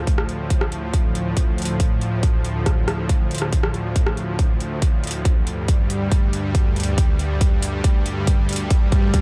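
Heavy wobble dubstep at 139 BPM in a half-time feel, this aggressive, chaotic build-up in D minor rests on a lush, detuned supersaw pad holding sustained Dm chords with sidechain pumping, a punchy, up-front electronic kick, and an overdriven dubstep kit of metallic hi-hats and rim clicks that breaks into a drum fill at 5.3 seconds, all in a dark, dry mix cut from a longer piece.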